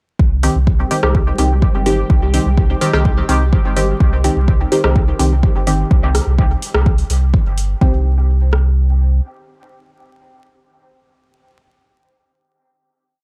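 Meditative and deep, this dub techno piece pairs an overdriven deep house kit's four-on-the-floor kick and rim click with a second overdriven layer of metallic programmed hats and backbeat rim, beneath a smooth, dark sine sub bass in a dotted rhythm and muted sawtooth off-beat chord stabs, both pumping from sidechain, the stabs treated with chorus, phaser and dub echo, while a very quiet flickering granular texture holds a high note until 5.9 s and a crisp, wave-folded wavetable stab echoes sparsely in the background before carrying the final chord from 7.8 s, within a dry, gritty recording dusted with vinyl crackle.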